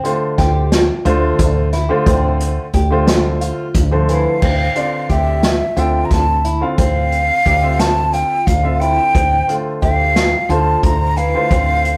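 Opening on a clear concert grand piano with audible action, shimmering fingerpicked twelve-string guitar arpeggios, a roomy unplugged drum kit with dark cymbals and bundle sticks, and a round fretless bass from 0.4 seconds, this bright, driving progressive instrumental in 7/8 at 178 BPM moves from Dm11 through Dm9 to Fmaj13 as a breathy jazz flute with vibrato takes the melody up front from 4.1 seconds, all captured in a rough rehearsal-room sound with moderate reverb.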